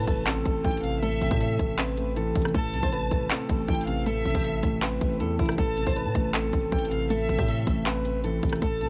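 A barely audible electronic impact opens this dark, menacing trap excerpt in A minor at 158 BPM with a half-time feel, as a fingerpicked archtop guitar with finger squeak carries the melody over a felt-muted upright piano with audible action noise, a lush, vibrato-rich violin section with tape echo sings a higher second line, a distorted, heavy 808-style bass sits below, and from 0.1 s an up-front trap kit of hard-clipped kick, crisp hats, handclaps and rim clicks joins within a small room ambience.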